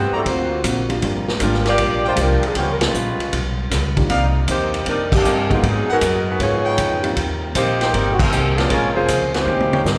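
Set in a reverberant concert-hall space, this joyful, brassy big band swing excerpt in Eb major moves at 156 BPM, with a smooth saxophone section carrying the melody up front over a punchy vintage drum kit with dark cymbals, a growly pizzicato upright bass, a dark hollow-body guitar and an intimate baby grand piano with audible action noise, while a soft-attack trumpet section adds tight stabs, the band hits accents at 2.8 and 5.1 seconds, and a clear trombone section enters at 9.3 seconds just before a closing drum fill.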